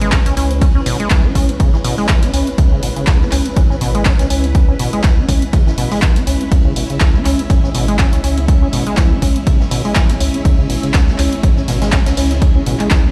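An acid house excerpt with a gritty, hypnotic pull, built on an overdriven, punchy electronic kick up front, overdriven analog handclaps and hi-hat, a soft jazz brush kit of dark ride and snare in the background, a squelchy, resonant sawtooth acid bass riff with overdrive, delay and a filter sweep throughout, a deep, round sine sub bass, lush vintage string-machine chords with ensemble chorus, all three pumping with sidechain compression, and a very quiet bowed symphonic string section adding expressive vibrato over a C#m7 chord, the whole heard in a bare stone room on a big sound system.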